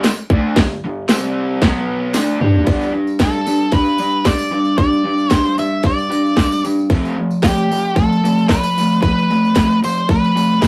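A rough rehearsal-room sound with light reverb frames this rowdy, swaggering garage rock excerpt in G mixolydian at 113 BPM, where an overdriven, double-tracked rhythm guitar drives a picked riff up front over a tight-kicked, cracking-snared drum kit and a jingly tambourine tucked in the background. After a drum fill from 2.2 to 2.7 seconds, a dark octave-fuzz lead guitar enters at 3.2 seconds with a distorted, picked melody, as the chords shift from power-chord moves on G, C and B to an F at 6.9 seconds.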